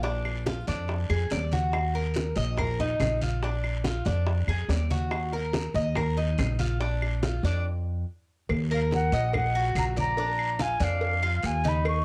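A homespun cassette recording with light small-room reverb carries this sultry excerpt of Cuban son and guajira at 142 BPM in Eb minor, where an up-front, bright, metallic tres picks double-string arpeggios over a growly, thumpy pizzicato upright bass, joined by tight, high-tuned bongos and cowbell, raspy guiro, thick-skinned low-tuned congas sitting in the background, and woody background claves from 0.3 seconds, until a brief stop at 7.6 seconds leads to an airy, distant jazz flute with vibrato and a crisp chiff entering at 8.7 seconds.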